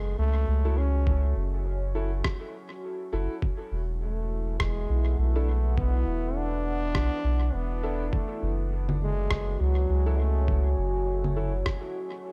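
Ambient dub with a deep, spacious mood, this short excerpt moves in a loose, swung 4/4 over a chord progression that shifts from F#m7 to E7sus4 and back. A close-miked trombone carries the melody in a classical style from the opening, its phrases trailed by dub echo until it falls away at 10.8 seconds. Beneath it, a soft, round sub bass sits up front, while a dark, warbling pad of sustained chords fades in with a slow attack, its vintage, chorused tone washed in its own reverb. A woody, boxy upright piano adds echoing stabs with long sustain. The muffled, tape-warm drums arrive gradually: a thumpy, pitched-down kick enters at 1.1 seconds, followed at 2.2 seconds by rim clicks and congas sent through dub echo, all inside a digital ambience.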